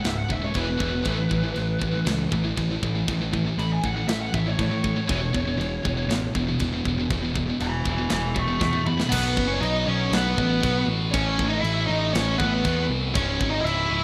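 A fuzzy, overdriven picked bass sits up front in this dark, aggressive heavy metal excerpt, under a dusky bluesy lead guitar solo with distortion and digital delay, two bright high-gain rhythm guitars playing riffs (one set back, dropping out at 9.1 seconds), a tight acoustic drum kit with crisp cymbals and a drum fill at 8.6 seconds, and a second distorted, mellow-toned high-gain lead line entering at 9.1 seconds, all in a rough home-demo mix with light studio reverb.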